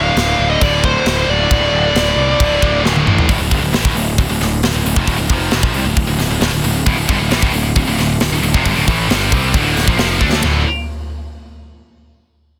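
A dense, heavily limited modern master with little reverb gives this dark, relentless heavy metal excerpt a close, crushing sound in a straight 4/4. A smooth, shadowy lead guitar with overdrive carries a short melody at the very start and stops at 2.8 seconds. Two bright, high-gain guitars with distortion drive the riff underneath. One of them drops out at 3.3 seconds and returns at 6.9 seconds. A growly, fuzzed electric bass sits up front with punch, and a tight, polished acoustic drum kit adds bright cymbals, a medium-tuned snare, toms and a firm kick, with fills marking the section changes. The harmony stays rooted on D, moving between minor chords and bare power chords.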